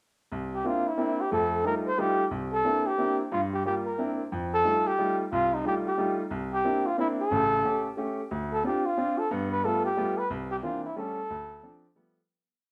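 A breathy flugelhorn carries the melody up front in this short, playful jazz waltz, its mellow, whispered tone shaped by gentle vibrato, soft attacks and scooped notes as it spins song-like phrases from a few recurring motifs. Beneath it, a clear baby grand piano supplies the accompaniment with a stride approach and close voicings, its open, long-sustaining sound sitting up front alongside the horn. The swung triple-time feel moves through dominant ninth colours on C9 and F9, with turns through A7, Dm7 and G9 that keep the harmony lively. A moderate large-studio reverb adds a sense of space, and the whole ensemble is tuned to A4 = 437 Hz. The complete piece plays as a single head from 0.3 seconds and fades out between 9.9 and 12.3 seconds, leaving a warm impression.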